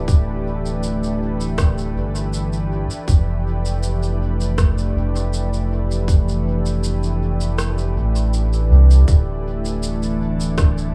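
Ambient dub at 80 BPM in D dorian, meditative and deep, cut from a longer piece, with a soft organ-like pad holding sustained chords from Dsus2 to Fmaj7 and back, its pure, calm tone shaded by ensemble chorus and built-in reverb. A round, up-front sub bass sits beneath a tight electronic kick, which drops out between 7.6 and 9.1 seconds, while a faint electronic shaker and rim click carry dub echo. The mix is echo-heavy with small room ambience and light reverb.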